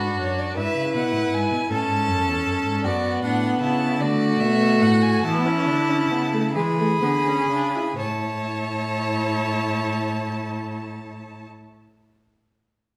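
Stately yet lively, this baroque-style fugue for string quartet in A major moves in a straight 6/8 at 40-53 BPM, slowing from 1.7 to 8.0 seconds before a new section arrives at 8.0 seconds in this brief cut from a longer piece. Two rich, bowed violins carry the melody and a second line with smooth, even vibrato, the second violin sitting up front, while the viola plays an expressive accompaniment with portamento from a distance. The warm cello anchors the bass with its own vibrato and sliding expression, all within a stone room whose reverb lingers for 1.3 seconds.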